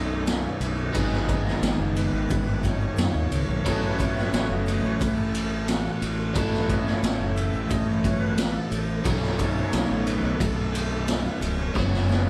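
Kaleidoscopic and hypnotic, this short psychedelic rock excerpt moves at an unhurried, straight pace and sounds like a band playing live together in one room, captured on cassette tape with some lossy compression artefacts and a moderate studio reverb. A bright, overdriven electric guitar, double-tracked and compressed with a phaser, carries the riff, while a buzzy vintage combo organ with heavy vibrato holds sustained chords in the background. A fingered electric bass adds a round, warm low end throughout. From 0.3 seconds, a gritty, saturated garage drum kit sits up front with a punchy kick, medium-tuned snare and ride cymbal, its top rolled off, joined by a grainy egg shaker that is barely audible. The harmony moves from B7 through G#m7 and A6 back to B7, and a drum fill from 11.7 seconds plays over a closing F#7sus4.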